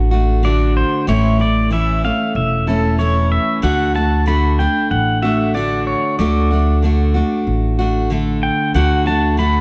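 Pedal steel guitar carries the spotlight in this sunny, easygoing country excerpt at 94 BPM in D major, its clean, electric tone played with fingerpicks and slide, shaped by volume swells, compression and an analog delay, sitting up front in a high register from 0.4 seconds onward. Beneath it, a picked steel-string acoustic dreadnought supplies bright, full-bodied accompaniment in a straight 4/4 feel. An upright bass played pizzicato on steel strings gives a woody low foundation, also placed up front. The harmony moves between D and A, settling back on D at 3.6 seconds, and the short passage repeats its opening section from 6.2 seconds. Close, detailed microphones and light reverb keep the sound intimate and clear.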